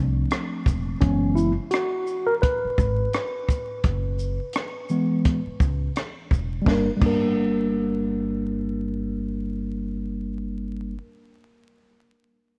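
Nocturnal and cool, this jazz-hop excerpt sits in a relaxed 4/4 with a lazy swing on the sixteenths. A mellow tine electric piano carries the accompaniment throughout, its clean tone heard through built-in speakers and shaded by a low-pass filter, taking a solo with a filter sweep until 6.7 seconds, where a new section settles on a minor chord after suspended ninth voicings, the first of them rootless. Underneath, a pizzicato upright bass with steel strings gives a woody, dark low end, sitting up front in the mix. A compact cocktail drum kit enters at 0.3 seconds and plays until 7.2 seconds, pairing a punchy kick and high-tuned snare with hi-hat, rim click, shaker and crash, all roughened by vintage 12-bit sampler grit. Light reverb, a small room ambience and a layer of vinyl crackle give the whole piece an intimate, late-night texture.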